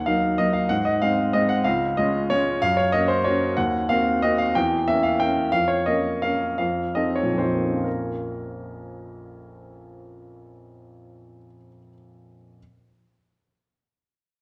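In a lilting three-beat waltz pulse with a flexible, rubato feel, this short classical fragment for solo baby grand piano unfolds in a bittersweet, wistful mood. The piano sits up front, clear and polished, ranging from deep bass notes to the upper middle of the keyboard. Its harmony drifts through a chain of falling-fifth chords before darker diminished colours lead to a dominant that settles onto the home minor chord at 7.8 seconds, where a new section begins. The pace slows between 5.0 and 7.8 seconds, easing into that arrival. The sound is wrapped in a wet recital-hall reverb and carries the worn, warbling pitch drift of old cassette tape, lending the polished playing a faded, nostalgic cast. Cut from a longer piece, the piano plays through to 12.6 seconds.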